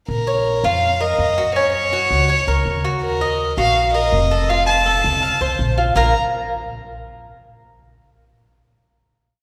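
Set in the wet, lingering reverb of a church or concert hall, this brief, complete piece of Cuban son and guajira moves at a danceable, sultry 164 BPM in B-flat harmonic minor, cycling through Bbm, Gb, Ebm and F before closing on a Bb5 chord at 6.0 seconds. Up front, a single bowed violin sings an intimate, motif-based song melody with light vibrato, a soft attack and an airy sul tasto tone. Beneath it, a woody, thumpy gut-string upright bass plays a pizzicato tumbao that anticipates the chords, while from 0.3 seconds a bright, metallic Cuban tres picks an arpeggiated guajeo on its doubled strings.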